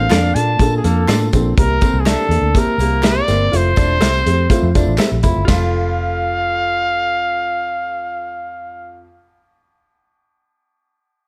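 Light reverb gives this short excerpt of uptempo 1960s-style soul a sense of space, and its mood is uplifting and joyful. Up front, a breathy, clear jazz-style trumpet carries the solo melody with vibrato and a punchy presence. Beneath it sits a round, foam-muted vintage electric bass with a dark, amped tone, while a mellow, woody upright piano with a boxy character plays the accompaniment. In the background, an electric guitar through a small old amp plays a slightly broken-up, lo-fi riff until 6.9 s, and a direct-recorded clean guitar adds compressed picked stabs. A natural country drum kit from a small room, with dark cymbals, a medium-tuned snare and a punchy kick, drives the first part alongside saturated group handclaps, tambourine and tube shaker, and both stop around 5.6 s as the music moves from a Bbmaj7, C7 and Fmaj7 progression to settle on F.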